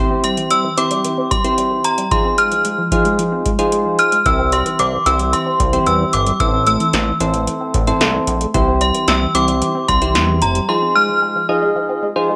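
This wistful yet upbeat synth-pop piece opens on soft, round electric-piano-like synth keys, up front and shimmering with chorus and tremolo, alongside a juicy, squelchy blip pluck that spins resonant, detuned arpeggios through phaser and delay. At 0.2 seconds a chiming, inharmonic synth lead carries the melody high above, its vintage FM ring warbling through ensemble chorus and phaser with a long release, while an electro analog drum machine arrives with a deep kick, punchy snare and metallic hats that carry the roomy character of a small space. A glossy, nasal synth bass with a retro pulse-wave edge and a moving notch enters at 4.3 seconds to anchor the low end. The harmony moves between C, Ab6 and Am in a straight, steady groove, all set in a wet studio reverb with a short tail. Cut from a longer piece, the passage feels like a single bright, nostalgic section in motion.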